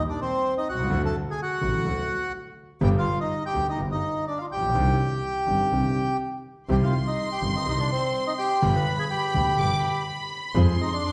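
Playful yet passionate, this rubato tango fragment puts a reedy, dark bandoneon up front with the melody, while a vintage-toned concert grand piano with deep bass supplies the accompaniment and a single bowed double bass adds a clear, boxy, intense line with vibrato and an airy bow. At 6.7 seconds a studio violin section enters on a high second line, played sul tasto with light vibrato and a soft attack for an intimate, close, smooth-topped sound. The ensemble sits in a recital hall's wet reverb, moving through chords from Eb and D toward G, C minor and F minor.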